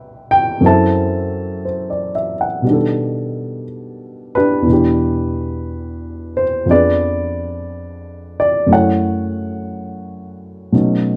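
Romantic and tender, this slow swung jazz ballad at 60 BPM is an 11.2-second fragment of a longer piece for solo baby grand piano, dark and mellow with short sustain and audible action noise, placed up front and intimate within a moderate large-studio reverb as it moves from Cmaj9 through B7alt and Fdim7 to F#m7.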